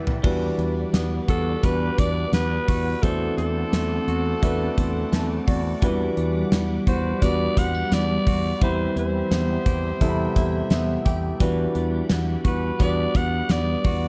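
Nostalgic yet urgent, this 86 BPM 1980s-style pop excerpt opens with a drum fill and band accent on a punchy gated kit with a fat snare, as a fretless bass holds down the low end, a deep-toned concert grand piano plays accompaniment with fills around 4.8 and 10.4 seconds, a mellow string machine sustains chords in the background beside a twangy, compressed guitar riff with slapback echo, and a raspy, gritty alto saxophone takes the lead melody from 1.3 seconds over Gmaj7/E, D7/E and Cmaj7/E harmony in a dry mix.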